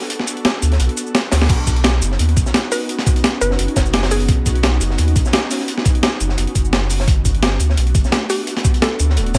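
Set in a digital ambience, this lush, warm liquid drum and bass excerpt moves at 172 BPM in B major with a lightly swung sixteenth feel. An ethereal, airy pad with ensemble chorus, built-in reverb and sidechain pumping holds rootless Gmaj9 chords, over a dark, saturated breakbeat kit sitting in the background and a gritty, up-front sampled kit of cabasa, crash, hi-hat and high-tuned snare; a deep, round sine sub bass arrives at 0.6 s. After a drum fill, a thumpy kick lands at 1.5 s as the harmony moves to Badd9, and a woody FM pluck with chorus and delay traces a short melody from 2.7 s and returns near the close.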